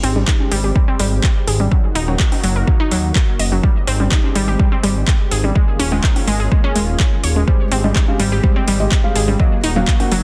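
A steady, straight 4/4 pulse drives this euphoric, expansive progressive house passage, cut from a longer piece. An overdriven electronic kick sits up front with a deep, layered tone, joined by a deep house kit of handclaps and metallic hi-hats, while overdriven congas and cowbell, re-recorded in a large room, ride in the background. A fat, nasal bass built from detuned sawtooth and square waves anchors the low end with a saturated, filter-plucked attack and sidechain pumping. A glassy, crystalline wavetable pluck spins arpeggios through chorus and dub echo over a smooth, detuned sawtooth pad that sustains soft-attacked chords deep in the mix, as the harmony moves between Abmaj7, Ebm and Eb7sus4. At 7.5 seconds a felt-muted upright piano adds mellow, vintage stabs with audible action noise and dub echo, all set in a dense, heavily limited master with light digital reverb.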